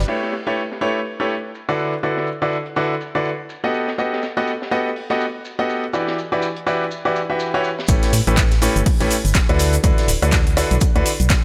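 Uplifting, joyful piano house at 123 BPM in A mixolydian with a 16th-note swing, where a bright grand piano riff with audible action noise, tape echo and sidechain pumping rides over A9, D69, B7b13 and Em9 chords, a tight metal drum kit of hi-hat, shaker and high-tuned snare ticks in the background, and at 7.9 seconds the drop brings in a punchy analog kick, a layered house kit of cabasa, crash, handclaps and filtered hi-hat, and a hollow, organ-like FM bass with sidechain pumping, all in a small room reverb in this brief excerpt.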